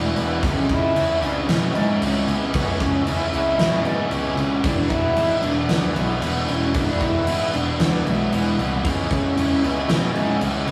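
Cathartic and restless, this excerpt of quiet-loud alternative rock moves at 114 BPM in a straight 4/4, with the harmony shifting from C#m7 to E7 and back. A dark, bowed cello carries the melody as a single expressive player, its vibrato and portamento gliding over a smooth top. Underneath, two thick fuzz guitars grind out the riff, one bright and set in the background, the other murky and very quiet, joined by a tight, double-tracked distorted guitar that also sits far down in the mix. A growly, punchy electric bass with overdrive and fuzz drives the low end, while a huge arena drum kit enters at 0.2 seconds, up front with a punchy kick, fat snare and bright crash cymbal ringing in a big room. A very quiet tonewheel organ holds sustained chords through a slow rotary speaker, its clear tone carrying light overdrive and key click. The whole take has a rough rehearsal-room character, colored by tube saturation and a short, wet small-room reverb.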